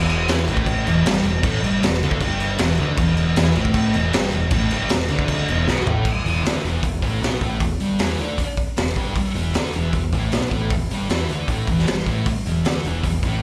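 Raw and rowdy, this short garage rock cut from a longer piece has a straight 4/4 feel and sits on an E5 chord. A thick, double-tracked fuzz guitar carries the riff up front, its picked, distorted tone warm and thick. Beneath it, a growling picked electric bass adds overdriven grit, heard both direct and through an amp. The raw garage drum kit is acoustic and saturated, with a punchy kick, a high-tuned snare, hi-hat, crash and toms, a rolled-off top and a pumping small-room sound. A drum fill from 5.7 to 6.1 seconds leads the band from the opening section into the next. The whole performance sounds like a live gig heard through a club's PA, wrapped in small-room ambience and club reverb.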